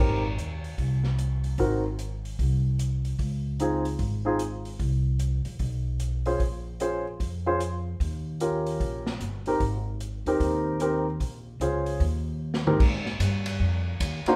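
Joyful and energetic, this big band swing excerpt in Ab major moves at 150 BPM with a concert grand piano comping through rich chords such as Abmaj9 and Bbm9, its intimate sound carrying audible action noise and deep bass, over a woody, growly pizzicato upright bass and a dark, smooth drum kit with a punchy kick and a rolled-off top that enters at 0.4 s and plays a fill at 12.4 s, all set back in a large studio with moderate reverb.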